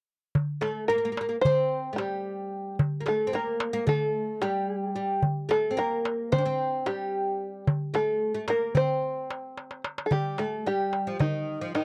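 Hypnotic and longing, this Turkish makam ensemble piece moves in a straight 9/8, with a crisp, high metal-shell darbuka played close and dry with soft hands entering first at 0.3 seconds. An up-front, fingerpicked open-back banjo carries the plunky, twangy melody while a fretless oud, woody and deep with its double strings, plucks a second line beneath it. A darbuka fill at 9.6 seconds leads into a new section at 10.1 seconds, all within a dry, close 1970s-style studio sound touched by light reverb.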